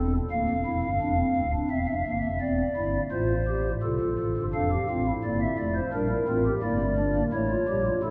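This is a classical, baroque-style four-part fugue for pipe organ, driving and serious in mood, moving at 86 BPM in a straight 4/4. A single pipe organ plays alone from the start of this 8.1-second excerpt, voiced on stopped flute stops that sound hollow and mellow, with a romantic voicing and a tremulant shimmer. The organ sits up front and spans a range from D1 up to F5. The harmony travels through Bb/D, C7/E and F/A before settling into D minor at 4.5 s, where a second section opens on Dm/F and moves through Gm to A7. A long, wet cathedral reverb surrounds the instrument, and the tuning rests at A4 = 438 Hz.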